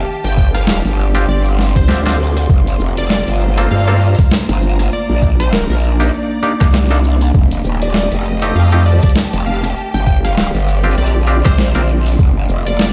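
A growling, distorted bass sits up front in this gritty, playful glitch hop cut, wobbling through a formant filter with chorus and tube saturation from the very start. A sampler-style boom bap kit of hi-hat, rim click, shaker and a high-tuned snare enters at 0.2 s over a swung sixteenth-note feel, and an overdriven, pitched-down electronic kick thumps in alongside it at 0.4 s, with a drum fill at 1.6 s. A punchy, detuned sawtooth lead carries a catchy melody through phaser and digital delay, while clean, stringy clav stabs enter at 1.1 s through a combo amp, pumping with the sidechain and echoing through their own delay. In the background, a warbling, lo-fi tape-like pad holds sustained chords with chorus, phaser and built-in reverb, and a distant, lush symphonic string section adds a bowed texture, both breathing with sidechain pumping. The harmony moves through extended chords such as Gm11, Cm9 and F9, and the mix is dry yet carries the stone-room echo of a big sound system playing in a bare space.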